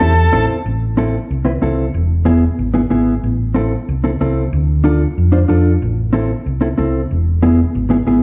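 Danceable and driving, this short cumbia excerpt moves at a brisk 186 BPM in straight 4/4, set in A minor with tuning a touch sharp at A4 = 443 Hz. A vintage, buzzy combo organ with light vibrato opens on a single A4 in the melody, sounding only in the first half second. A mellow, clean electric guitar supplies the accompaniment throughout, its dark, compressed, fingered tone sitting up front. Underneath, a hollow-body short-scale electric bass plays round, punchy lines, slightly louder than the other parts. The harmony cycles through Am, E, Am, Dm, Am and back to E, and the whole passage is heard from further back in a large studio with a wet reverb of 1.4 s.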